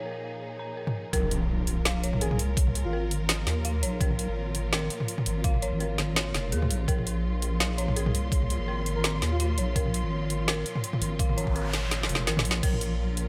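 Dark and spacious, this half-time drum and bass excerpt moves at 167 BPM in 4/4 with a light swing on the sixteenths, cut from a longer piece. It opens on distant, bowed symphonic strings holding lush sustained chords with a subtle sidechain pump, while an eerie, inharmonic FM synth bell spins arpeggios through chorus and delay. A layered drum kit with a woody snare, bright hats, crash and toms slips in at 0.9 seconds, just ahead of the drop. The drop lands at 1.1 seconds with a background impact, bringing in an overdriven electronic kick with a knocking punch and a deep wobbling bass with a triangle-and-sine tone that sits up front. A soft, breathy flute-like lead drifts in the background in two brief phrases, coloured by lush chorus, delay and vintage 12-bit sampler grit. Near the end, a noise sweep runs from 11.4 seconds and a drum fill closes the passage, all framed by light digital reverb and a bright 1980s-style digital production.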